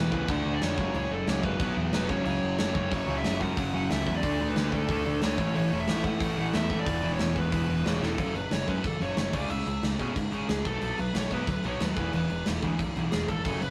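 A straight 4/4 pulse from a big, acoustic rock kit joins just after the guitars and bass in this angry, aggressive punk rock excerpt, with a tight kick, medium-tuned snare, hi-hat and crash sitting up front in a roomy, rolled-off sound and a drum fill at 8.0 seconds. A sludgy distorted guitar riff churns alongside a compressed overdriven rhythm guitar tucked in the background, which drops out at 8.2 seconds and returns only at 13.4, while a bright, punchy overdriven picked bass underpins them. Over the top, a dark, smooth overdriven lead guitar carries the melody throughout, all captured in a rough rehearsal-room recording with light reverb.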